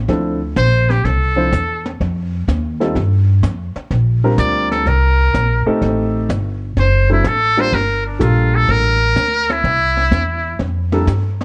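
Small-group swing jazz in F major moves at a relaxed 126 BPM in 4/4, its eighth notes swung with an easy, unhurried lilt in this brief cut from a longer piece. A pizzicato upright bass with steel strings sits up front, woody and warm, while an upright piano adds chordal accompaniment with a warm, wooden tone. Over them, a trumpet with a metal mute carries the melody from 0.6 s, its sound buzzy, thin and brilliant, touched with vibrato and played with forceful, punchy jazz phrasing that still feels slightly distant and roomy. A brush kit keeps time on brushed snare, hi-hat and a boomy kick, its high-tuned snare dark and smooth in a small room. The harmony moves from Dm9 through F7(no3) and Bb69 to an Am7b5-to-D7 turn before settling toward Gm9 and C, and the whole track carries a soft cassette-tape character with light reverb.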